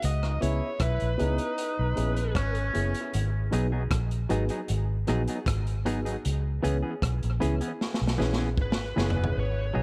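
A heavy, meditative dub reggae excerpt opens on a break with a biting, overdriven lead guitar melody, a dark, round, foam-muted fingered bass, a crunchy, gritty breakbeat kit and a brilliant, distant trombone second line, joined by woody, slightly detuned upright piano stabs and, from 3.5 seconds, a clean, hollow-body semi-hollow guitar accompaniment over C#m7 and G#m7 chords, with dub echo on the lead guitar, trombone, piano and semi-hollow guitar, and a drum fill from 7.8 seconds.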